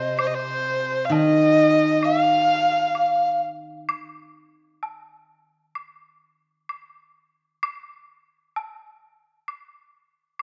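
A straight, unhurried 4/4 pulse at 64 BPM carries this tender, graceful Chinese traditional chamber piece in C yu mode. An intimate, boxy erhu with airy bow, vibrato and portamento sings the melody up front, joined by a hollow, buzzing bamboo dizi as a distant second line, over a silvery, ringing steel-string zither played with fingerpicks. The erhu and dizi stop at 3.4 seconds and the zither at 3.9 seconds, leaving a close woodblock alone until 10.4 seconds in a moderate recital hall reverb.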